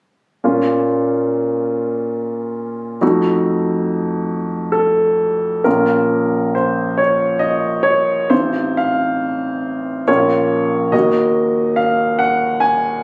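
In a 3/4 at 69 BPM with uneven, rubato beats, this brooding and passionate romantic character piece for solo piano unfolds in Bb minor, cut from a longer work. The clear baby grand sits up front with an intimate, natural tone, long sustain and audible action noise, ranging from A1 to Ab5. Captured on a phone in the room, it carries a moderate large-studio reverb, and it moves from Bbm and F7b9 into a second passage at 5.7 seconds that passes through F7/A before reaching Ebm at 10.9 seconds.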